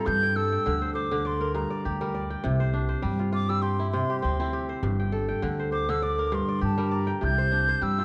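Up front, a fingerpicked kora rings out crisp arpeggios in this flowing, hypnotic West African traditional fragment, set at 101 BPM in G dorian with a light swing on the sixteenths as the harmony alternates between Gm and C. A close-miked silver concert flute carries the melody high above with a pure, hollow tone, tongued notes and gentle vibrato, while a pizzicato upright bass enters at 0.1 seconds with a woody, dark low end. A moderate recital hall reverb surrounds the trio, and worn cassette tape adds a warbling pitch drift.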